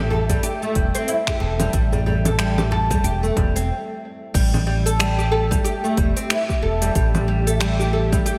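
A big, arena-scale concert hall reverb surrounds this meditative organic downtempo piece at 92 BPM in 4/4, swung on the sixteenths and opening on A7(no3). Up front, a woody, double-strung oud plays arpeggios through tape and slapback echo, a round, dark fretless bass holds the low end, and an airy, detuned pad sustains chords in the background with chorus, tremolo and sidechain pumping. A deep, tape-colored electronic kick and a kit of crisp hats, congas, shaker, finger snaps and crash drive the groove, while a faint, ringing bronze singing bowl and a tight, cracking djembe drop away before a stop at 3.7 s, after which the music resumes at 4.3 s.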